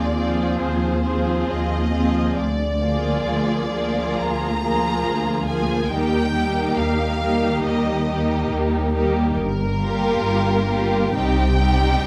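A full string orchestra opens together in a lyrical, serene romantic movement cut from a longer piece, its rubato phrasing unhurried, with a focused, distant first violin section carrying the warm melody high above a rich, lush second violin line. Smooth, even violas accompany from close by, while dark cellos sit in the background and expressive double basses anchor the low end, every section bowed with vibrato. A light reverb surrounds the 12.1-second passage as the harmony moves from Fm7/Eb through Bb7/D and Eb to Gm7, settling on Cm.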